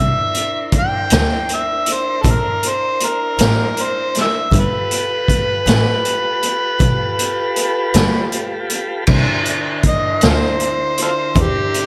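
In a slow 12/8 pulse at 53 BPM, this gritty, rollicking blues excerpt in C mixolydian moves from C9 to G9 and back. An overdriven, amplified harmonica carries the melody up front with light vibrato, tongue slaps and scooped notes, over smooth sustained chords from a clean tonewheel organ through a slow rotary speaker and a rich, nasal bowed double bass with a soft attack and an airy bow. A saturated garage kit with a boomy kick and rolled-off top enters at 0.3 seconds, and the harmonica takes a solo at 9.1 seconds, all set in a lush hall reverb with a big arena sound.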